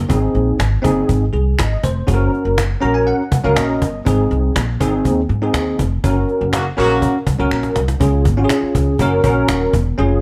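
Joyful and danceable, this short uptempo slice of 1960s-style soul moves at 122 BPM in a straight 4/4, cut from a longer piece. A woody, dark upright bass plays pizzicato up front, while a bell-like tine electric piano with an ensemble chorus sits alongside it, bright, clean and direct, adding a fill around 2.6 seconds. A snappy cajon with snares gives the groove a small-room acoustic feel, and a human finger snap sits lower in the mix. The warm horn section appears only briefly at 6.5 seconds, tight and jazz-styled with light vibrato and octave doubling, inside a band accent that closes with a drum fill. The harmony moves between Ab and Gb before shifting to Db as a new section begins at 8.0 seconds, all set in light reverb.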